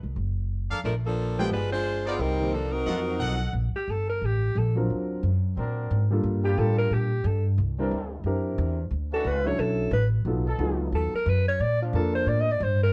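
A mellow alto saxophone takes the spotlight from 3.8 seconds, its punchy, scooped notes and vibrato sounding forceful yet roomy over the rest of this brassy big band swing excerpt in Bb major at 179 BPM. Before the solo, a clear, close-miked saxophone section sits up front carrying the melody while a trumpet section with a smooth top adds bright stabs in the opening seconds. Beneath it all, a woody, growly upright bass is plucked throughout, and a natural-sounding grand piano supplies chordal accompaniment. Once the solo is underway, a trombone section with light vibrato holds present, sustained chords. Harmonies move through richly colored jazz chords such as G7b9, D7alt and B7#11, and the whole recording carries light reverb and the worn, warbling pitch drift of old cassette tape.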